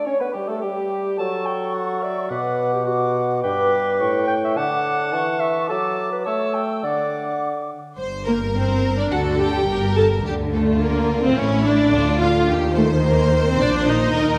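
This cheerful, lively classical-period movement for symphony orchestra opens with woodwinds: a mellow, distant cor anglais, an up-front solo bassoon carrying the accompaniment, an airy flute section and a warm solo clarinet. They play in D major at a quick 107 BPM in a straight 2/4, with harmonies moving from F#m7 and Bm through G and A7 before settling on D. At 8.0 seconds the winds give way to strings, and the key turns to G minor. A close studio violin section, a dark, woody cello section and a focused double bass section enter, and moments later, at 8.3 seconds, a chamber violin section takes the melody while a lush, up-front viola section fills the middle. All of these bowed strings play with vibrato as the chords pass through Gm, Dm and A toward Eb6 and Bb. A concert hall reverb with a 2.4-second tail surrounds the orchestra in this excerpt, which is cut from a longer piece and stops at 14.4 seconds.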